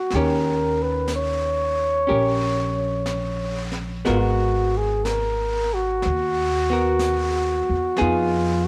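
A bucket-muted trumpet carries the melody up front, its dark, veiled tone softened by a gentle attack and a light vibrato as it moves between F4 and Db5. This is a slow, intimate jazz ballad in Eb minor at 61 BPM, swung in 4/4, with a melancholic air that suits a short piece cut from a longer performance. A miked hollow-body archtop guitar plays clean, picked accompaniment with a shadowed electric tone, while a woody pizzicato upright bass sits up front in the low register. Brushes on a high-tuned snare and hi-hat come in at 0.1 seconds, keeping the jazz kit soft beneath the other parts. The harmony moves from Eb7 to Abm9 at 4.1 seconds and reaches Fm7b5 at 8.0 seconds. The home cassette recording adds tape character to the trumpet, guitar and drums, all set in a small room with light reverb.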